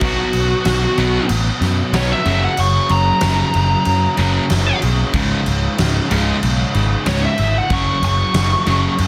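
A dark, distorted lead guitar solo opens this driving, menacing hard rock excerpt at once, its bluesy melody touched with slapback echo and riding high over a straight 4/4 pulse. Beneath it, three rhythm guitars play riffs: a bright, double-tracked and compressed distorted guitar plays throughout, while a cranked stack guitar with overdrive and a warm, crunchy overdriven guitar stay in the background until they stop at 8.9 s. A growly, amped picked bass is up front, anchoring the low end. A huge acoustic arena kit fills a big room with a fat snare, punchy kick and crashing cymbals. The harmony moves through B5, F#, C#5 and F#5, all under light studio reverb and a dense, heavily limited modern master.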